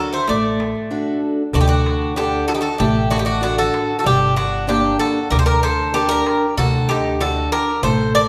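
Greek folk from a bouzouki band at 96 BPM in a straight 4/4, moody and bittersweet, where a bright, metallic lead bouzouki with double strings sits up front over a softer second bouzouki line, a boxy parlour steel-string guitar with old strings picks the accompaniment, and a dark, woody pizzicato upright bass and a crisp, saturated metal-shell darbuka, the latter in the background, join at 0.3 s, with a break from 0.9 to 1.5 s before the harmony moves from D to Gm and back to D, all wrapped in the reverb of a recital hall.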